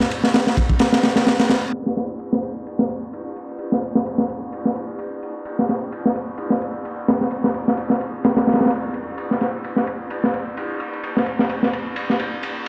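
A crunchy breakbeat drum kit opens this gritty, energetic excerpt at 129 BPM in 4/4, with a punchy kick, high-tuned snare and dark ride cymbal sitting up front over a light 16th-note swing. The saturated hardware sound carries vinyl crackle, a rolled-off top and a moderate plate reverb. A filter sweep runs from 1.7 seconds to the end at 12.7 seconds.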